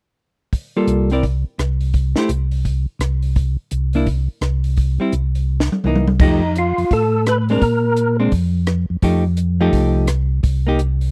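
Bluesy and greasy, this short cut from a longer soul jazz organ trio swings at 170 BPM in 4/4, sitting in F mixolydian. A compact cocktail drum kit, dry and acoustic with dark cymbals, a high-tuned snare and a punchy kick, drives the groove from 0.5 seconds, and its fill around 5.5 seconds leads into the second section. A hollow-body jazz guitar, electric, dark and cleanly picked, supplies chordal accompaniment through changes like Gm9, Am7, C7#9 and F9. Underneath, a mellow, round tonewheel organ carries the bass line with chorus vibrato, key click and a slow rotary speaker. At 6.2 seconds a fat, percussive tonewheel organ with third harmonic percussion, key click and slapback echo steps in for a brief melody that lasts until about 8.2 seconds. The close, dry 1970s-style studio sound keeps every part up front.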